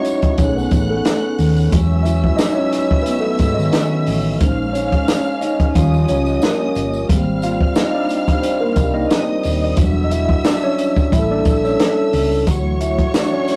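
Silky and bittersweet, this short cut from a longer piece is lush 1970s-style soul with a gentle swing. A mellow tine electric piano takes the lead as soloist for the full 13.6 seconds, clean and up front through its built-in speakers, moving over rich extended chords such as B13, Emaj9, A#m11 and Dmaj9. Beneath it, a compact cocktail drum kit sits close and dark, with a punchy kick, a high-tuned snare and a rolled-off top, while a faint, jingly tambourine shimmers in the background. A round, amped hollow-body bass enters at 0.4 seconds and fingers a punchy low line. A symphonic string section adds a lush bowed second line with vibrato and portamento, and a classical-style French horn section holds soft sustained chords. The whole has the rough, saturated feel of a rehearsal-room recording, wrapped in moderate studio reverb.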